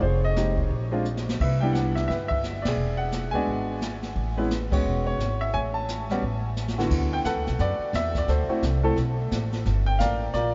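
A clear, up-front baby grand piano carries the melody in this playful, swinging jazz piano trio excerpt at 174 BPM, over a woody, growly pizzicato upright bass and a distant, roomy brush kit with dark cymbals and a boomy kick, all set in a vast, echoing space, with drum fills at 1.1 and 6.6 seconds, band accents, and a shift from A major to D major at 6.9 seconds.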